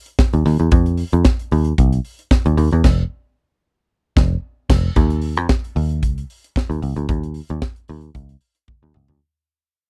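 A straight disco pulse in 4/4 sets a sultry, danceable groove from the very start of this short cut from a longer piece. A modern studio drum kit, acoustic and polished with an airy small-room quality, drives the track with a punchy kick, a high-tuned snare, hi-hat, crash cymbal and toms, all sitting up front. A picked electric bass joins at 0.3 seconds, its dark, round, foam-muted tone heard direct and up front, moving in the low register between F1 and F2. Between 2.8 and 5.0 seconds the band hits a shared accent before the music begins to fade out as the next section arrives at 5.0 seconds. A drum fill closes the passage at 8.7 seconds, and the dry, close sound with little reverb gives the whole recording a 1970s studio feel.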